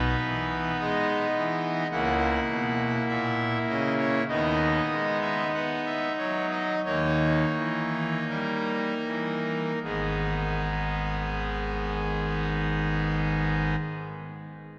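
A rubato 4/4 pulse of 38 to 54 BPM slows through the first 9.8 seconds of this grave, solemn classical chorale in G# minor, where a solo pipe organ on its brassy, bright trumpet stop sits up front in a romantic voicing spanning G#1 to F#5, moving through G#m/B, A#dim/C#, G#m/D# and D#7 before settling on G#m, then falling silent at 13.8 seconds as a cathedral reverb with a long decay carries on in this fragment cut from a longer piece.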